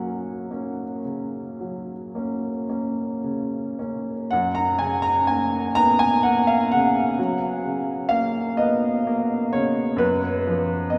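Set in 12/8 at a slow 35-45 BPM counted in dotted quarters, the rhythm moves with a free, breathing rubato typical of a romantic nocturne. This classical excerpt, cut from a longer piece, features a solo upright piano playing from 0.0 to 11.0 s across a range from F#2 to A#5, with a woody, natural tone placed up front. The harmony rests in F# major, opening on an F# chord and shifting at 10.0 s to a rootless C#7 over F#, while the instrument is tuned slightly low to A4 = 436 Hz. A wet cathedral reverb with a 5.1-second decay surrounds the playing, and the room is heard from further back, giving the performance a spacious, distant glow. The phrase is stated at the start and then begins again at 4.3 s, and the overall mood is serene and nostalgic.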